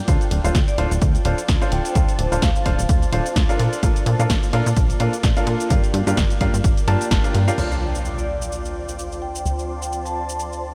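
A clear baby grand piano with short sustain carries the riff through this bittersweet, soulful piano house excerpt at 128 BPM in D minor, its delay and sidechain pumping riding over Dm7, Bbmaj7 and Gm7 chords with a 16th-note swing. Beneath it, a punchy, funky wave-folded analog bass plucks low, while a cloudy, detuned granular pad pumps softly and a tape-warm analog drum machine supplies snare, hi-hat, cabasa and crash cymbal. A punchy electronic kick drives the groove until 7.2 s, an electronic impact arrives at 7.6 s as the harmony returns to Dm7, and a dark, ringing vibraphone played with hard mallets adds a delayed melody in the background, all set in a light digital ambience.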